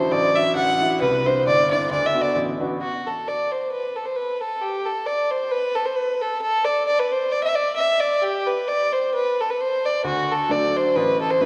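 A wet concert-hall reverb surrounds this bright, lively Celtic polka in D mixolydian, which moves at 133 BPM in 2/4 with a light swing and is cut from a longer piece. A single bowed fiddle, dark and boxy with light vibrato, carries the melody up front throughout, while a clear, open upright piano with long sustain accompanies it until 2.8 seconds. The fiddle then plays alone until the piano returns at 10.0 seconds on a D chord.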